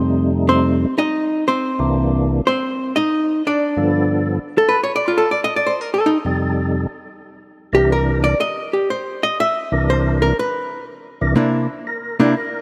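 Bluesy and greasy, this swinging jazz excerpt moves at 121 BPM in 4/4 with swing on the eighth notes. A fat, lightly overdriven tonewheel organ carries the melody up front, its percussive attack, second-harmonic percussion and key click colored by chorus vibrato and a slow rotary speaker. A clean, compressed hollow-body electric guitar shares the foreground, playing accompaniment with a warm, picked tone and taking a solo from 0.0 to 11.4 seconds. The harmony rides dominant ninth chords, moving through F9, G9 and C9 before a brief chordless stretch at 8.4 seconds and a return to C9. A lush hall reverb surrounds the rough home-demo mix, and the passage shifts into a new section just before it cuts off at 12.6 seconds.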